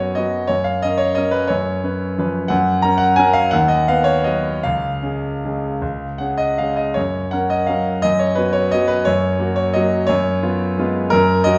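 A lilting three-beat waltz pulse moves with free, elastic rubato, giving this classical piano fragment an elegant, graceful sway. A single concert grand plays alone throughout the 11.6 seconds, its tone clear and natural, with deep bass at the bottom of its range and long sustain letting each chord ring. The harmony circles around its home chord, stepping out to the subdominant and a dominant seventh before returning home. The piano sits up front in the sound, set within a recital hall whose reverb tail lasts about 1.4 seconds, adding an airy, spacious bloom around the instrument.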